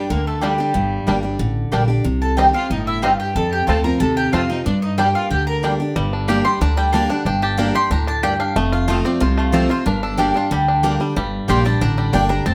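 A bright, double-strung mandolin carries the melody in this driving, rustic bluegrass excerpt in a minor key, with plate reverb, over a full-bodied, up-front picked dreadnought guitar with audible finger squeak, while a rich, smoothly bowed fiddle with light vibrato plays a second line until 5.6 s. A dark, thumpy upright bass with gut strings sits up front, and from 0.4 s a twangy fingerpicked banjo with plate reverb adds a second melody as a mellow, woody second mandolin punches in stabs. The band sits in a moderate studio room, moving through G minor, C minor and F chords.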